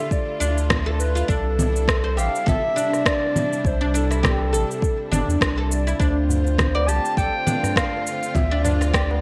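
Organic downtempo in D minor at 102 BPM, this short cut from a longer piece has a mystical, earthy mood and a gently swung 4/4 groove. A dark, smooth-topped clarinet carries the melody in a classical style between A4 and A5, trailed by delay, while a bowed string section sits in the background with vibrato, soft sul tasto sustained chords and a sidechain pumping effect. A mellow, woody oud plucked with a plectrum plays arpeggios through digital delay from 0.4 seconds, and a round sine sub bass sits up front, also pumping, alongside the deep, layered electronic kick. Tape-warm electronic shaker, rim click and congas ride up front with gated reverb, and a low-tuned acoustic tabla with a short ring enters in the background at 6.3 seconds. The harmony moves from Dm to C6 and settles on Dm7, all framed by light reverb and a bright 1980s-style digital production.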